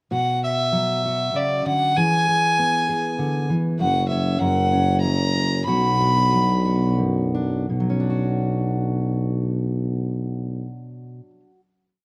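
Dry and open-air, this short, melancholic acoustic folk piece in three-four pairs a reedy, gut-string fiddle playing a motif-based melody with dark, full-bodied fingerpicked steel-string guitar using an alternating thumb, while a mellow tuba enters at 3.8 seconds with a dotted bass figure as the music slows, the fiddle stops at 6.9 seconds, and the guitar and tuba settle into an intimate final chord.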